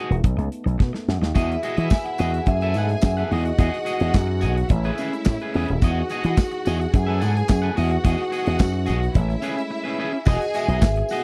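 A joyful, danceable disco clip opens on a twangy, slightly broken-up electric guitar and a dark, soft-attack French horn section, quickly joined by a punchy slap bass through an envelope filter and a tight, polished drum kit with handclaps, before a ringing vibraphone melody, lush bowed strings and a jingly tambourine arrive at 1.4 seconds over a dry, close 1970s-style sound, with a break at 9.7 seconds and the vibraphone returning at 10.3 seconds.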